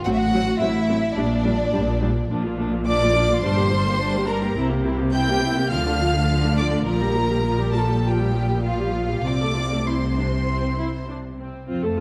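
A dark recording in a concert hall, with a long, wet reverb, gives this string orchestra passage a glowing depth. It is a quick, lively classical-period movement in four, played with a spirited yet flexible rubato feel, and it is cut from a longer piece. The first violins carry the melody up high with light vibrato, a soft attack and a sul tasto touch that sounds intimate and close. The second violins trace a clear, focused second line that sits more distant in the hall. Beneath them, the violas supply smooth-topped accompaniment, while lush symphonic cellos and rich double basses share the bass, each section bowed with vibrato. The harmony passes through Gm, Bb and C7 before reaching F/C at 9.2 seconds; the violins stop at 11.1 seconds, and the violas and double basses carry on to 12.0 seconds.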